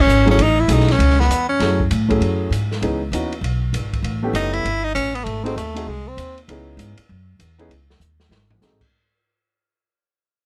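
This short excerpt opens with a bright, punchy tenor saxophone stating a forceful melody with vibrato and scooped notes, while a pizzicato upright bass sounds beneath it from the very start. It is small-group swing and bop in C# minor at 197 BPM, swung in 4/4, with a smoky, cool mood. The open drum kit enters at 0.1 seconds with dark cymbals, a medium-tuned snare and a boomy kick, and a baby grand piano follows at 0.3 seconds with warm, natural accompaniment over chords such as F#m9, C#m9, A7 and G#7b9. The saxophone plays in two short phrases, returning at 4.4 seconds, and stands up front alongside the woody, thumpy bass, and a drum fill arrives near the end as the whole passage fades out. The sound is close and detailed with little reverb, keeping the horn's attack vivid against the kit's rolled-off top.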